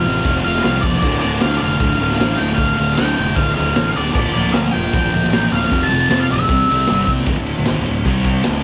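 Menacing and swaggering, this short garage rock clip, cut from a longer piece, drives along at 154 BPM in a straight 4/4 in D minor, tuned slightly flat of standard pitch. A thick, double-tracked fuzz guitar sits up front with a picked, distorted riff, while a fuzz fingered electric bass adds an overdriven, punchy low end beneath it. Above them, a dark octave-fuzz lead guitar carries the melody with a cassette-tape grit until about 7.1 seconds, when it stops and leaves the riff and rhythm section to close out a brief final passage from 7.3 seconds. The raw garage drum kit, also up front, brings a punchy kick, a medium-tuned snare, hi-hat and crash, with a saturated, rolled-off top and a pumping small-room sound. The harmony moves from F to D minor, Bb over D and C before settling onto bare D and C power chords, all captured as a home cassette recording with a dull, hazy top end and studio reverb.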